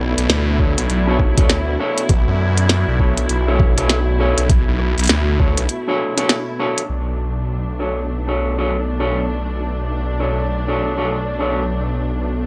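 A swirling, thick phased saw bass in B minor opens this playful, gritty glitch hop excerpt at 100 BPM with a swung 16th feel, sitting over veiled, muted strings and a deep, moody pad in the background, both pumping against the sidechain. A tiny snare, clicky filtered hats and rim clicks come in almost at once, joined by a thumpy, overdriven kick and dark, clean electric guitar stabs run through a low-pass filter and analog delay. A break arrives at 5.7 seconds, and from 6.9 seconds the drums drop away, leaving the bass, strings, pad and guitar in a dry, gritty mix.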